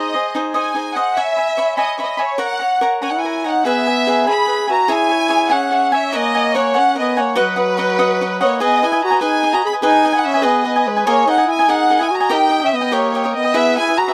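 A dry, close 1970s-style studio recording with light reverb frames this proud, romantic mariachi excerpt in 6/8, where a bright, focused violin section carries the bowed melody with vibrato up front over crisp, picked acoustic cavaquinho accompaniment, joined at 3.0 s by a mellow, classical-style solo trumpet on a lower second line before the music turns to a new, more shadowed section at 8.6 s.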